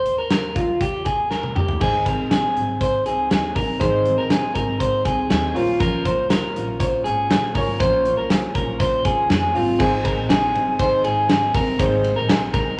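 A straight 4/4 groove from a dark, punchy rock drum kit and a thumpy, gut-strung pizzicato upright bass drives this breezy, bright stretch of jangly indie pop, cut from a longer piece, where a twangy, slightly broken-up electric guitar plays arpeggios up front, and after a drum fill ending at 1.8 seconds a full-bodied jumbo steel-string acoustic guitar and a slightly detuned upright piano in the background join in, the whole mix sitting in a wet large-studio reverb.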